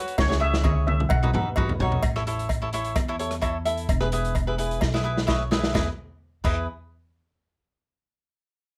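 A straight 4/4 calypso groove drives this bouncy, carefree clip from a longer piece, as an up-front, crisp picked cavaquinho and a woody, thumpy pizzicato upright bass carry the chords from C#m through B and A to E. A shimmering steel pan lead with tape echo sounds only until 1.5 s, while a vintage drum kit with a punchy kick, dark cymbals and a rolled-off top plays a fill up to 2.0 s and another from 4.8 s, joined throughout by a close, dry cowbell. The cavaquinho adds a fill of its own alongside that second drum fill, and the whole mix sits in a light reverb.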